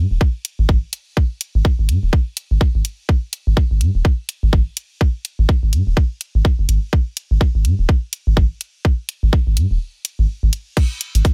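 Swung sixteenths at 125 BPM in 4/4 drive this clinical, sparse minimal techno fragment, cut from a longer piece and tuned to A4 = 437 Hz, where a tight, up-front electronic kick enters at 0.2 seconds over a deep, punchy sine sub bass with a pitch-drop attack and sidechain pumping, a quieter garage drum kit adds warm hi-hats and crash cymbal, and a break arrives at 9.8 seconds in a dry mix.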